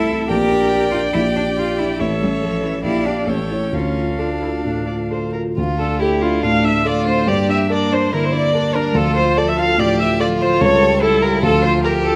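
This fragment of a quick classical-period movement for piano quintet moves in 4/4 between 127 and 148 BPM, pulled about with rubato, in a stormy, urgent D minor. A dark, mellow grand piano sits up front with the accompaniment, intimate and vintage in character, its action noise audible. A clear, focused viola adds to the accompaniment, while one violin carries the melody with a smooth, even vibrato from somewhat in the background. A second violin, focused and rich, and a close, smooth cello each play a second line, all five parts sounding together for the full 12.2 seconds. The harmony circles through minor-key motion from G minor over B flat to A, B flat, A7 and D minor, later returning through G minor and A7 over C sharp to settle on D minor at 11.4 seconds, all set in a moderate recital hall reverb.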